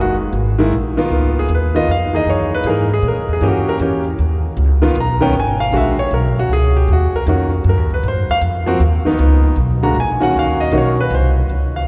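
A deep cathedral reverb with a long 4.5-second tail surrounds this short excerpt, which was recorded in a church or concert hall, yet both instruments sit up front and close. It is a relaxed, warm jazz waltz in 3/4 with a gentle swing on the eighth notes. The grand piano carries the melody as a solo from 0.0 to 11.5 seconds, its tone clear and intimate, with short sustain and the soft clatter of its action audible beneath the notes. An upright bass plays pizzicato beneath it throughout, its steel strings giving a woody, acoustic body to the low end. The harmony moves through lush extended chords such as Gb69, Db13, Gdim7 and Ab13, then passes through a Dbsus2 and Gb69/Bb to Ebm7 before the chord changes drop away at 11.1 seconds.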